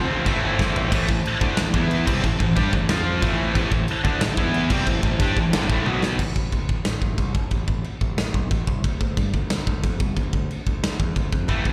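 Up front, a big acoustic rock drum kit drives this relentless, heavy metal excerpt at 182 BPM in straight 4/4, with bright china and crash cymbals, a medium-tuned snare, a tight kick, toms and fills at about 0.6 and 5.9 seconds. Three picked guitars carry the A minor riff over Am, E5, F5 and B5 chords until 6.2 seconds: a scooped, high-gain guitar with distortion and slapback echo is the loudest, an overdriven guitar with the same echo sits in the background, and a very quiet, double-tracked, compressed fuzz guitar adds a softer layer beneath. A brassy analog pad with chorus, vibrato, a detuned sawtooth tone, a noise layer, a filter swell and a moving notch holds airy, sustained chords in the background over the same stretch. From 6.2 seconds the harmony falls away and the growling, overdriven electric bass and the drums carry on, with the guitars returning only briefly at 11.5 seconds. 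The sound is that of a live gig heard through a venue's PA, wrapped in a recital hall's reverb that lends the whole band a roomy character.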